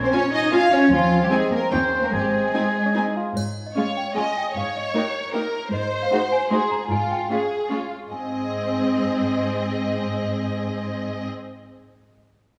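A wet scoring-stage reverb surrounds this playful, whimsical film cue in 3/4, cut from a longer piece and carrying a quirky, magical mood. Lush, expressive violin sections carry the melody and a second line from a distant seat, over smooth, close violas and a rich cello section holding the bass, while a clear oboe, mellow bassoon and French horn chords, and a bowed double bass section fill out the opening few seconds. At 3.4 s a bell-like, slightly out-of-tune celesta joins the melody with a delicate, sweet tone, along with a brief triangle, and rings on to 12.0 s.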